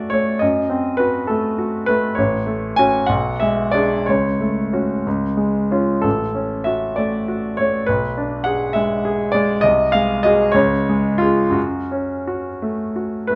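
Flowing in a lilting 6/8 with free, elastic rubato, this brief passage from a longer romantic character piece for solo piano moves at an unhurried pace. The mood is passionate and brooding. A bright concert grand carries everything alone, reaching from a deep bass around A1 up to G#5, its tone brilliant and polished, with short sustain. The harmony leans on shadowy diminished chords, passes through a G#7 with its third in the bass near 9.6 seconds, and settles on a minor chord at 11.6 seconds. A moderate, large studio reverb places the instrument a little further back in the room.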